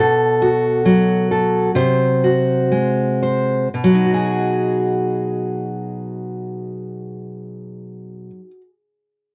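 A fingerpicked steel-string dreadnought guitar carries this short folk fragment alone, its dark tone and fresh strings sitting up front in a dry, close 1970s-style studio sound with light reverb. The mood is intimate and nostalgic, with the pace slowing over the first 3.7 seconds as the chords move from B5 through G#7/B# before settling on B6 for the closing phrase. It is cut from a longer piece.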